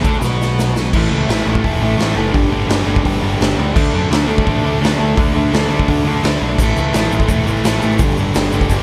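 A double-tracked, compressed fuzz guitar riff leads this raw, swaggering garage rock excerpt at 170 BPM in straight 4/4, moving through A5, G5 and D5 over a growling, overdriven picked bass and a saturated drum kit with a punchy kick in a pumping stone room that opens with a fill at 0.2 seconds, while a grainy tube shaker sits in the background at the start and returns at 6.6 seconds, with little reverb on the mix.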